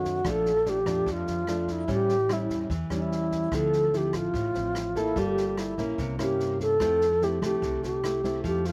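A straight 4/4 bossa nova pulse at 146 BPM carries this short, sophisticated and romantic fragment in F major, tuned slightly flat to A4 = 437 Hz. Up front, a mellow wooden-headed alto flute sings the melody between E4 and A4, its airy tone shaped by vibrato, a crisp attack, rolled-off highs and a slightly unsteady quality. Beside it, a classical nylon-string guitar accompanies with thumb-plucked chords and audible finger squeak, moving through Bbmaj7, A7, Dm9, Gm9 and C7b9 before settling on Fmaj7 at 6.8 seconds. Underneath, a pizzicato upright bass with steel strings adds a woody low line. A natural-sounding acoustic jazz kit, with its boomy kick, rim click and medium-tuned snare, sits further back in the mix. The dry outdoor recording has little reverb, keeping every part close and intimate across the full 8.7 seconds.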